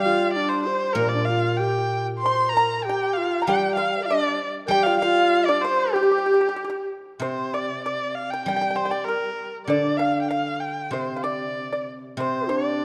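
Graceful and tender, this excerpt from a longer traditional Chinese chamber piece moves with rubato phrasing in 2/4. A clear, focused erhu carries the melody up front, its bowed line shaded with vibrato and portamento. An airy bamboo xiao plays a second line with a crisp attack and expressive straight tone; it drops out at 6.9 seconds and returns near the close at 12.2 seconds. A mellow, dry pipa enters at 2.3 seconds as another second line, its fingerpicked notes percussive. Beneath them the guzheng supplies a ringing, silvery accompaniment in its low register, and the whole ensemble sits in a moderate concert hall reverb with a dark, warm production.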